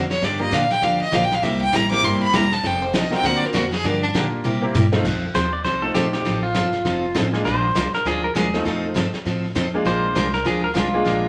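Heard in a large, reverberant studio room, this playful, swinging western swing piece from the country tradition opens with a clear, earthy fiddle carrying the melody until 4.1 s, and a brushed drum fill on a dark, smooth vintage kit at 4.4 s leads into a twangy, compressed pedal steel guitar solo from 5.3 s, full of volume swells and slide, all set over a bright, full-bodied picked jumbo acoustic guitar, a woody pizzicato upright bass and a brilliant upright piano.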